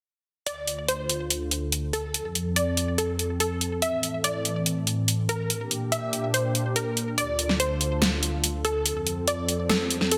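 Menacing and heavy, this half-time wobble dubstep passage, cut from a longer piece, sets a punchy, wave-folded sawtooth pluck melody with delay over a thick, airy detuned pad whose sustained chords carry chorus, phaser and a filter sweep from 0.5 to 10.2 seconds. An electronic, layered drum kit sits up front with a huge snare and bright hi-hats in a small room ambience. A lush hall reverb surrounds the mix, which arrives through a dense, heavily limited modern master.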